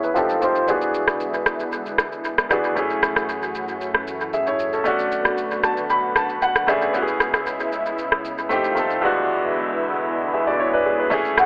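A boxy grand piano, a thick, warbling detuned pad pumping under sidechain, and an up-front electronic drum kit of deep kick, rim click and shaker with dub echo open this deep, hypnotic amapiano excerpt under a long filter sweep, as a round sawtooth-and-sine analog bass hums in the background from 2.8 s, the piano slips in a fill, a woody, punchy log drum bass lands at 11.1 s, and an airy silver flute with a crisp chiff appears at 11.4 s, all set in an echo-heavy, telephone-like mix with moderate plate reverb.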